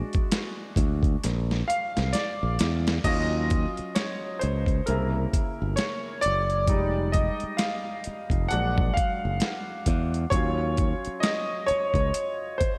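R&B with a neo-soul lean, this introspective, smooth excerpt sits at a slow 66 BPM in Eb dorian with a swung sixteenth feel, its chords moving from Bb7b13 through Ebm9, C7b9 and Fm7. A clear, intimate grand piano with lush chorus and audible action noise carries the lead from the start, while a dusty, sampler-style drum kit with overdriven grit, a thumpy kick and crash cymbal enters at 0.1 seconds and plays a fill from 1.2 to 3.0 seconds. A bright, growly fingered electric bass joins at 0.8 seconds, and the whole mix is soaked in a dreamy hall reverb, as it is cut from a longer piece.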